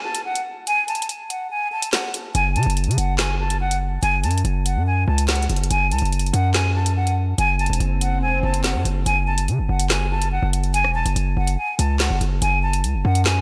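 A hollow, airy silver concert flute leads this dark, menacing drill excerpt, playing a close-miked, tongued melody in straight tone between F#5 and A5, bathed in a diffuse ambient delay. Set in F# minor at 143 BPM with a half-time feel, the piece opens on a break where the electronic drum kit's woody snare, metallic hi-hats, handclaps and rim clicks sit up front while the kick is muted from 0.7 to 2.3 seconds. At 2.3 seconds a hard-hitting 808-style bass arrives, punchy and heavy, its sine tone layered with noise, with a fast attack and a decaying tail reaching down to E1. An electronic swell sounds in the background from 7.7 to 9.1 seconds, marking the shift into a new section that carries through to the end. The whole mix is dreamy and soaked in plate reverb, giving the menace a haunted, spacious sheen.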